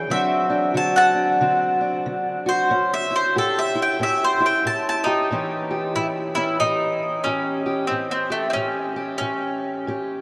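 A bright, round mandolin sits up front and carries the melody, its picked double strings ringing out across a solo that runs from the start to 5.3 seconds. Beneath it, a fingerpicked steel-string parlour guitar supplies the accompaniment with a dark, boxy tone, also placed up front and playing throughout. This gritty, laid-back acoustic country blues moves at an easy 92 BPM in 4/4 with a gentle swing on the eighth notes, centred on A mixolydian and tuned slightly low, to A4 = 438 Hz. The harmony moves from D7 to A7 early on, and a second section begins at 5.3 seconds. The recording is steeped in a huge, wet ambient reverb that makes the duo sound as if they are playing in a vast, echoing space, and the clip is cut from a longer piece.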